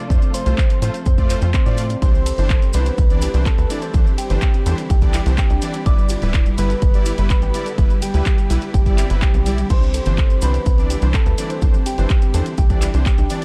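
This dark, warm-toned progressive house excerpt has a dry, close sound, with a punchy layered kick up front and a tight, nasal sawtooth sequencer bass pumping beneath it at 125 BPM in C major, while a house kit of handclaps, hi-hat, ride and crash sits in a small room alongside grainy, mellow maracas in the background. A full, round octave-layered synth lead carries the hopeful melody with chorus, vibrato and tape echo, shadowed by a very quiet, pure FM bell line with phaser, as a soft round pluck arpeggiates and a smooth detuned supersaw stabs chords, both pumping and echoing. Beneath them a very quiet, lush bowed string section holds expressive sustained chords through F, Cadd9 and G6, and a faint electronic swell sounds from 9.0 to 9.7 seconds, giving the passage an expansive lift.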